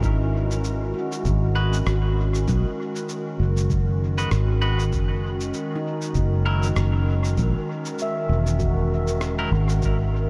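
A peaceful, spacious ambient dub excerpt opens with a warbling, detuned pad holding sustained chords with slow attacks and long releases, its lo-fi, nostalgic character softened by chorus and its own reverb. Alongside it, a stainless steel handpan rings out meditative arpeggios under soft fingertips, drifting in diffuse ambient delay, while a round, foam-muted fingered electric bass sits up front and a muffled, pitched-down electronic kick thumps in the background. Sampler-style electronic cabasa and rim clicks, compressed and tape-tinged, trail off into dub echo over a relaxed 98 BPM groove in 4/4 with a light swing on the sixteenths. At 1.6 seconds a clean, twangy electric guitar enters with bright picked stabs, roughened by vintage 12-bit sampler grit and thrown into dub echo. The harmony moves from G#m7 to F#7 at 4.9 seconds in F# mixolydian, and at 7.1 seconds a very quiet, dark, breathy wind-like noise texture swells in on a single sustained tone, all set in a light reverb.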